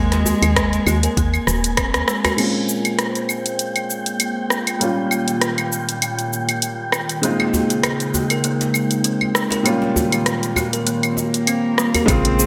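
Warm and hypnotic, this organic downtempo excerpt moves at 99 BPM in 4/4 with a light sixteenth-note swing, cut from a longer piece and shaped by lush hall reverb within a bright 1980s-style digital production. A breathy, wind-like tuned noise texture hangs high over nearly the whole passage, while a ringing, thumbnail-plucked kalimba traces delayed arpeggios under a filter sweep, joined by a hard-handed djembe with metal rattles. An intimate, sul tasto cello with light vibrato and an airy bow sings a short delayed melody at the opening and returns near the end, as a round, woody FM bass pumps against the sidechain and a deep electronic kick briefly appears. After a drum fill, a felt-muted upright piano enters as accompaniment at 2.4 seconds, mellow and vintage beneath its own filter sweep, and a nostalgic, warbling tape-like pad settles in with chorus and slow-attack sustained chords from 3.0 seconds. 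Throughout, an up-front afro-pop kit with dark hats, claves, rim clicks, shaker and crash carries gated reverb as the harmony drifts from Ebsus4 through Bbm7, Eb7/Bb and Dbmaj7/Bb.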